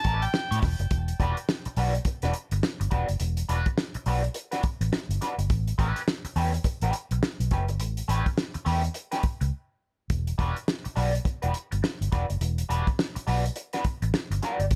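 A dark, round, foam-muted fingered electric bass sits up front in this sly, cool funk excerpt, moving between E dorian chords at 104 BPM with a 16th-note swing. Beside it, a soul drum kit of hi-hat, kick and a fat snare sounds gritty and saturated, with a rolled-off top and a pumping room feel. A twangy, picked electric guitar at the edge of break-up carries the accompaniment through a wah until 14.6 seconds. A reedy, bright tonewheel organ with key click, light overdrive and tape echo voices a brief melody only in the opening 0.6 seconds. The harmony moves between A9 and Em9, a short break arrives at 9.5 seconds, and the dry, close sound keeps every part tight and present.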